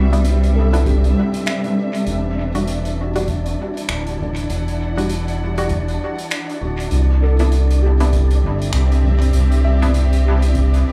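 A cloudy, blurred granular pad, a muted felt piano playing soft arpeggios with 12-bit sampler grit and dub echo in the background, and a round, up-front analog bass open this spacious, meditative ambient dub excerpt, joined by an airy, wind-like noise texture, filtered chord stabs with chorus and echo, a distant soft-mallet kit of finger snaps, hi-hat and toms, and a dry, deep electronic kick from 0.9 s, all in an echo-heavy mix drifting over Cmaj7 and Em7.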